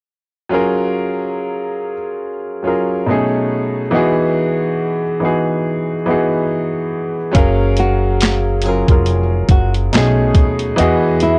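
A swung sixteenth-note feel in 4/4 drives this cosy, nostalgic lo-fi hip hop fragment. An up-front, woody upright piano with long sustain and a low-pass filter opens alone on smooth, vintage maj9 and 13 chords. At 7.3 s a gritty, compressed, pitched-down boom bap kit arrives with a thumpy kick, high-tuned snare, handclaps and hi-hat, joined by pizzicato upright bass and a dark, fingerpicked nylon-string guitar melody, all wrapped in a small-room reverb and a worn cassette-tape warble with drifting pitch.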